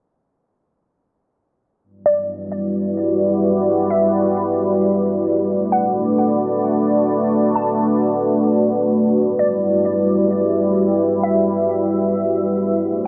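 Floating in free time, this spacious, melancholic hip hop excerpt in E minor moves through Em9, Bm7 and back to Em9 under a dark production with a huge ambient reverb. A bright, up-front pad of detuned sawtooth with a sub octave holds sustained chords with chorus from 2.3 seconds to 13.1 seconds. Above it, a crystalline, nasal wavetable pluck carries the melody from 2.1 seconds to 11.4 seconds, softened by a low-pass filter and trailed by tape echo and chorus.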